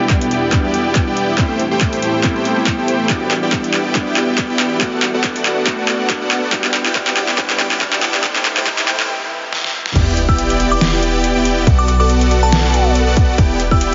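Huge, detuned supersaw chords pump up front through a bittersweet, dreamy half-time future bass build, with glassy digital keys and an ethereal, warbling pad in the background, an overdriven dubstep kit with a hard-clipped electronic kick, and a very quiet riser and sub drop, before the drop at 10.0 seconds brings in a boomy 808-style bass and a crystalline FM bell with 12-bit grit, all under shimmer reverb and a heavily compressed, radio-like sound.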